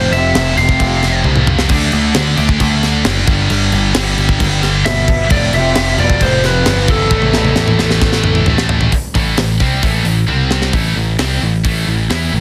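Hard rock with an aggressive, heavy drive, this short cut from a longer piece moves on a straight four-beat pulse. A pair of scooped, high-gain rhythm guitars grind out the distorted riff throughout, one tucked in the background, beneath an overdriven picked bass that sits dark, round and up front. The tight metal drum kit comes in at 0.1 seconds with a high-tuned snare and a saturated, gritty sound, adding crash, hi-hat, toms and a softly clipped kick, with fills at 1.2, 7.1 and 10.3 seconds. A lightly driven, twangy lead guitar carries the melody in brief passages, returning at 4.9 seconds with plate reverb and digital delay. Alongside it, a bowed cello with biting, nasal vibrato and an airy bow adds a second line in the background, also on plate reverb, all inside a small room with light reverb and a dense, heavily limited modern master.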